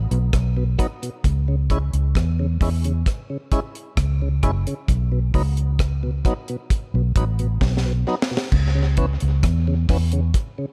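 A straight 4/4 pulse at 66 BPM sets a hypnotic, serious roots reggae groove in C# minor, in this cut from a longer piece. The deep reggae drum kit sits up front with a tight kick, a high-tuned snare, rim clicks, hi-hat and dark crash cymbals; its acoustic, dry tone is colored by tape echo, and a drum fill arrives at 7.6 seconds. Also up front, the vintage muted fingered electric bass gives a round, foam-muted, amped low end between F#1 and E2. Further back, a warm, full tonewheel organ adds lightly overdriven accompaniment through a slow rotary speaker. The harmony moves from B to C#m and back to B, then opens onto C#m7 when a new section begins at 8.5 seconds. The echo-heavy mix sits in a small room ambience.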